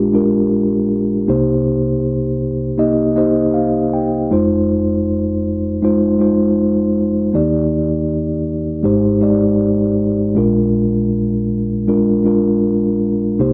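A straight 4/4 pulse at 79 BPM carries this nostalgic, intimate folk excerpt, tuned to A4 = 441 Hz. A mellow tine electric piano plays alone from 0.0 to 13.5 s, its clean tone heard through its built-in speakers and placed up front, spanning F1 to G5 over chords moving from Bb7 through Cm7, Fm7, Ebmaj7 and Abmaj7 back to Bb7. Light reverb touches the piano, while the room sound stays dry and close, like a 1970s-style studio recording.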